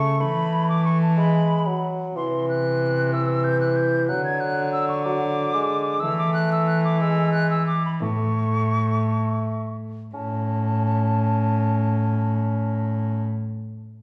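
A stately, courtly renaissance-style consort dance in 6/8, with an airy, hollow concert flute carrying the melody high above a clear, up-front bassoon accompaniment and a rich, reedy gut-string cello bass, all three playing from the start to 13.2 seconds, slowing between 5.1 and 10.1 seconds and heard from further back in a reverberant recital hall, cut from a longer piece.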